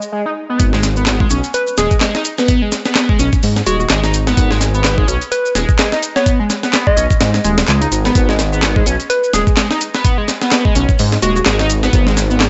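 Breakbeat in G# minor at 127 BPM, this energetic, gritty clip moves with a 57% swing on the sixteenths and sits squarely in a drop from 0.6 seconds onward, over a steady G# minor chord. Electronic shaker and handclaps open the clip from the start, tucked in the background, before a compressed, pitched-up sampler-style kit arrives up front at 0.6 seconds with a thumpy kick, a medium-tuned snare, hi-hats and a tape-warm edge. Entering at the same moment, a dark detuned saw bass rumbles low and deep, its unison voices beating against each other under tube saturation. Above it, an overdriven synth lead carries the riff with a screaming, guitar-like bite, colored by phaser, vibrato, analog chorus, tube saturation and tape echo. From 1.5 to 11.4 seconds a soft struck synth lead adds a round, keys-like melody with a warbling vintage FM character, filtered through chorus, a telephone-like tone and tape echo. 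The mix carries light reverb and a top end rolled off above 7.9 kHz.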